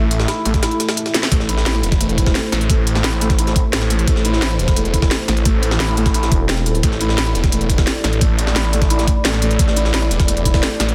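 Dark technical drum and bass at 174 BPM in A minor, tense and brooding, where a snarling distorted saw bass sits up front under a knocking overdriven electronic kick, a cracking snare with crisp hats, a gritty pitched-up jungle sampler kit in the background, a moody chorused analog pad and a felt-muted upright piano with audible action noise and tape echo arpeggiating on an A minor chord, with sidechain pumping the pad, piano and saw bass, a drum fill at 1.1 seconds and a growling FM bass bursting in briefly at 6.3 seconds.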